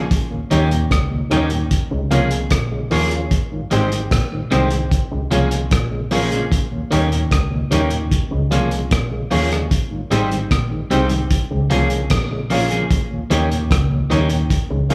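A straight 4/4 groove at 75 BPM drives this sunny, uplifting roots reggae clip, with a cloth-damped, thuddy drum kit up front giving a muffled, gritty hi-hat, tight kick and rim click, while a bowed double bass adds a nasal, reedy gut-string tone. An electric guitar at the edge of break-up plays compressed, picked accompaniment, joined by a mellow, round tonewheel organ in the background with chorus vibrato, slow rotary speaker and analog delay, woody upright piano stabs with audible action noise, and a very quiet, twangy envelope-filtered guitar riff. The band plays live in one room inside a wet large studio reverb, cycling through Eb7, Db6, Abmaj7 and Db6 across roughly 15 seconds.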